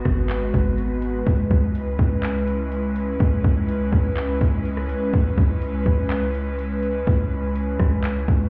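An airy, detuned pad with chorus and sidechain pumping opens alongside a deep, boomy 808-style bass on G#m7 before moving to C#m7 at 1.3 seconds, and a trap kit of hard-clipped kick, metallic hi-hats, handclaps and rim clicks enters at 0.1 seconds in this floating, blissful cloud-rap fragment at 124 BPM in a half-time feel, all heard muffled as if through a wall with a stone-room reverb.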